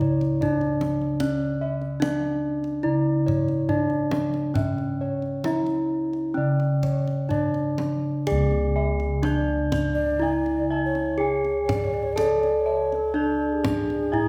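A ringing bronze metallophone, struck with a wooden mallet, carries the melody up front in this hypnotic, shimmering passage of Javanese gamelan, cut from a longer piece in C# pelog at a slow 62-75 BPM in a straight 4/4. Beneath it, a set of bossed gongs holds the bass with a dark, smooth, round tone that beats as it sustains. A higher set of bossed gongs spins bright, airy arpeggios. A kendang adds deep percussion struck with hard hands, its sound close and dry against the reverb of a church or concert hall. At 8.3 s the music moves into a new section as a second metallophone, played with a horn mallet, joins with arpeggios of its own. At 9.9 s a breathy, mellow xiao enters on a second line, its end-blown bamboo voice coloured by vibrato and tongued notes.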